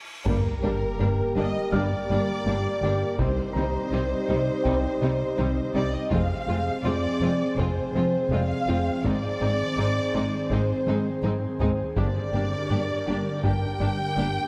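Futuristic and brooding, this hybrid orchestral and electronic film cue opens with a huge cymbal swell and sub drop before a pure sine lead with chorus, tremolo and delay carries the melody alongside lush violins, joined by a second violin line, expressive viola accompaniment, an airy pad, distant French horns, a soft pluck playing arpeggios, a deep analog bass riff, cello and woody double bass sections, and heavy taiko drums, with a dark, very quiet grand piano texture entering at 1.7 seconds, set inside a wet scoring-stage reverb.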